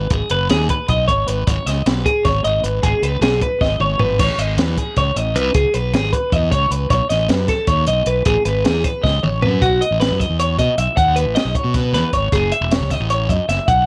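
This is a short, wistful and intricate cut of math rock and midwest emo in 7/8, moving at a brisk 310 BPM counted in eighths, in A lydian. A bright, clean twelve-string electric guitar plays picked arpeggios up front, its compressed, twangy chime running through the whole clip. Beneath it, a fuzz-laden fingered electric bass adds growly, overdriven weight, also sitting forward in the mix. A compact cocktail drum kit, acoustic and dark with a high-tuned snare and a punchy kick, plays crash, hi-hat, toms and snare, with fills around 3.6 and 9.0 seconds. The harmony drifts from G#m7 through Amaj9, C#m7 and B7 before a new section at 9.6 seconds that settles onto F#m9, all heard in a dry recording with little reverb.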